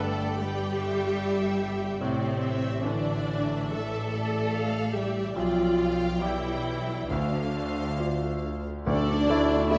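A rubato 4/4 pulse at around 67-74 BPM carries this sorrowful, longing cinematic film-score excerpt in D dorian, where a distant, vibrato-rich violin section sings the melody and a second vibrato-rich violin section carries a second line over lush, up-front violas, a clear piano with audible action noise and deep bass, a focused cello section that drops out at 8.4 s, and soft-attacked double basses, all in a moderate scoring-stage reverb, until a band accent at 8.9 s brings in articulate hard-mallet timpani on D3 and a barely audible tam-tam.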